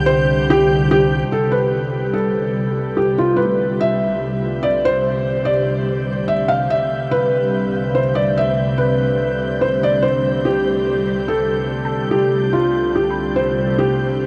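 Peaceful and serene, this ambient passage drifts at 72 BPM in a straight 4/4, cut from a longer piece and set in a vast, echoing space with a huge, wet reverb tail. A felt-muted upright piano carries the melody up front, mellow and intimate, its audible action noise adding a close, natural touch while shimmer reverb and a diffuse ambient delay trail behind it. Beneath it, an evolving wavetable pad holds sustained chords, bright and morphing through a phaser and shimmer reverb, while an organ-like drone sits low and calm, detuned and thickened by ensemble chorus. A muted studio violin section, veiled and con sordino with light vibrato, adds a high bowed texture that fades in alongside the pad from 1.3 seconds. A soft, round pluck traces very quiet, dark arpeggios, dropping out at 6.7 seconds and returning at 11.8 seconds. The harmony rests on Csus2 before settling onto Cadd9, keeping the whole passage suspended and still.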